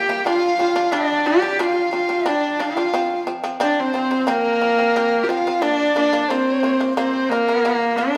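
A husky, earthy horsehead fiddle carries the melody up front, its airy bow, light vibrato and portamento giving this Mongolian folk excerpt a vast, galloping mood at 89 BPM in 4/4, set in a Bb gong mode. A bright, reedy large dizi with a buzzing bamboo membrane traces a second line above it, while a powerful, plectrum-plucked fretless shamisen adds percussive arpeggios underneath. The trio plays live together in one room, wrapped in a wet studio reverb with a 1.3-second tail.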